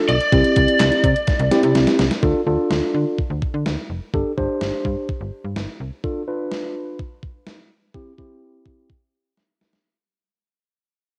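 A gated 80s digital drum machine, overdriven and tape-worn, with a thumpy kick, handclaps, hi-hat and a gated-reverb snare, drives this cool synth-pop excerpt at 126 BPM in D dorian alongside a snappy, metallic slap-like FM bass, a mellow tine electric piano, and a dark, overdriven lead guitar through a small cranked amp that sounds a D5 with analog delay only until 1.7 s, the mix sitting in a lush hall reverb with home-cassette character and fading out from 2.2 s.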